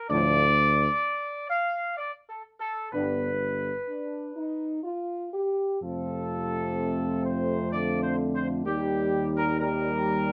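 Regal and solemn, this brief classical brass passage in 3/4, cut from a longer piece, places a mellow, vintage-toned trumpet section up front on the melody over sustained chords from a French horn section and a punchy trombone section, while a distant, roomy tuba carries the bass as the harmony moves from Dm through G and F to Eb, heard in a close, detailed recording with light reverb.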